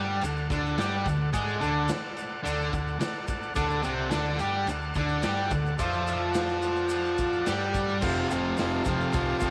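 Up front, a double-tracked fuzz guitar tears through a picked riff in this swaggering, raw garage rock excerpt, riding over a round, dark hollow-body bass, a gritty garage kit with punchy kick and crash cymbal entering at 0.2 seconds, a buzzy combo organ holding sustained chords with light vibrato, and a grainy tube shaker in the background, all in a small room with light reverb before the harmony shifts at 8.0 seconds.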